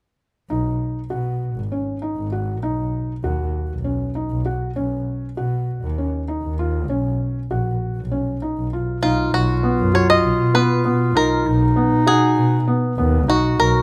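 Moving in a straight 7/8 at 197 BPM in eighths, this hopeful, restless piece of contemporary chamber music in B lydian is cut from a longer work. From 0.5 seconds a soft, felt-muted upright piano plays intimate arpeggios over a smooth, bowed double bass with vibrato, both up front, as the harmony shifts from B6 to F#5/B. At 9.0 seconds a twangy, percussive bluegrass banjo played with fingerpicks takes the melody while a dark, distant clarinet carries a second line in classical style, the whole set in light reverb until 13.8 seconds.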